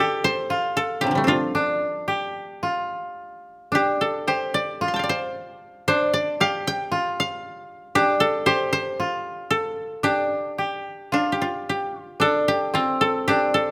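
A warm, woody koto plucked with fingerpicks carries the melody over a broad range, with a second, brighter koto playing a narrower supporting line alongside it; both sit dry and up front in close, detailed sound with a moderate recital-hall reverb, in this calm, austere piece of Japanese traditional chamber music at a slow, rubato 56 BPM in 2/4 and G suspended pentatonic, tuned to A4 = 444 Hz, cut from a longer work and moving into a new section at 12.2 seconds.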